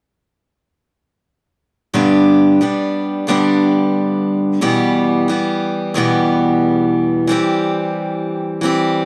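Folk excerpt in G major at 90 BPM in a straight 4/4, with a nostalgic, warm mood. A picked steel-string acoustic guitar plays accompaniment from 1.9 to 9.1 seconds, moving through G, Em and C/E, its bright, fresh-string concert tone placed up front. Light reverb surrounds the guitar.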